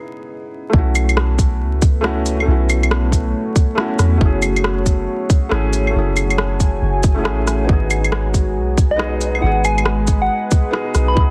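A muffled felt-muted upright piano opens alone before a tight, up-front electronic kick and a deep, round 808-style bass join at 0.7 seconds, setting a wistful, nocturnal future garage groove at 138 BPM with a 16th-note swing over C#m7, B9sus4, F#m9 and G#m7 chords, where both piano and bass pump against the kick, the piano trails analog delay, a smooth-hatted kit of cabasa, claves, hi-hat, rim click and softly clipped snare ticks underneath, a dark, warbling sawtooth pad with chorus, reverb and 12-bit grit enters from 1.6 seconds, and a gentle keys-like FM synth lead with chorus and delay appears at 8.9 seconds, all in a dense, heavily limited mix flecked with vinyl crackle.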